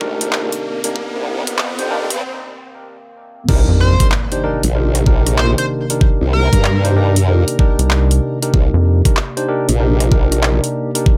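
A dry, filtered mix opens this swaggering, gritty glitch hop excerpt at 95 BPM in C minor, swung on the sixteenths, where a warbling lo-fi tape-like pad with sampler grit sustains a Cm9 chord beside clean tine electric piano stabs with delay. From the very start an overdriven knocking electronic kick and a dubstep kit with bright hats, handclaps, rim clicks and crash drive the groove, and an up-front formant-sweep wobble bass churns beneath them. The pad and piano are both filter-swept through a 3.5-second build-up as a riser climbs and then breaks off at 2.2 seconds. At the drop an impact lands, and a rubbery, hollow square bass bounces in briefly at 3.7 and again from 7.8 seconds. An edgy, tearing sync lead with chorus, vibrato and delay cuts through between 3.8 and 6.8 seconds.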